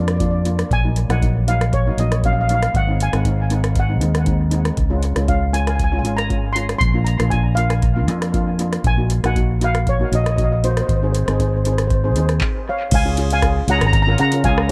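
A mellow, shimmering lead steel pan carries the melody over a second, airy double-seconds pan in this festive, bouncy calypso at 118 BPM in Db major, where both pans and an up-front analog drum machine of deep kick, metallic hi-hat, handclaps, rim click and crash cymbal sit in dub echo beneath light reverb, a round, punchy fingered electric bass drives from the front of the echo-heavy mix, and a brief stop at 12.4 seconds sets up a new section at 12.9 seconds in this short cut from a longer piece.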